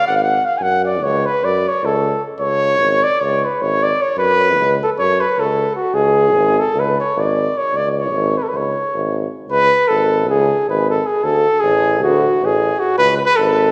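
Restless and fiery, this fragment of a longer Balkan folk piece in 9/8 pairs an up-front dark trumpet melody, classical in style with light vibrato and a smooth top, against a clear, vintage-toned tuba bass line, both ringing through the lush reverb of a recital hall as the harmony circles between F#m and C#5 before turning to D near 11.2 seconds.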